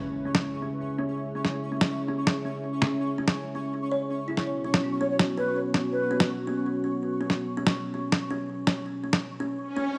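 A half-time drum and bass groove at 164 BPM anchors this heavy, dark fragment of a longer piece, with a gritty, pitched-down electronic snare sitting up front from 0.3 s, compressed and tape-warm in the sampler style. Beneath it, a deep, moody analog pad of detuned sawtooth and triangle tones with a sub octave holds sustained chords through chorus, moving from C#m to B5 at 4.5 s. A pulsing, tempo-synced gated texture of detuned unison voices hums alongside it with a slow attack, long release, chorus and built-in reverb, while a woody, boxy kalimba plays soft, ringing arpeggios through a low-pass filter that sweeps across the whole passage, trailed by digital delay. Between 5.0 and 6.3 s, an airy, hollow jazz flute slips in a brief melodic phrase with vibrato, a crisp chiff and rolled-off highs, echoed by its own delay. An electronic impact opens the fragment, a swell rises at 9.7 s, and a moderate echo chamber reverb lends the mix a shadowy sense of space.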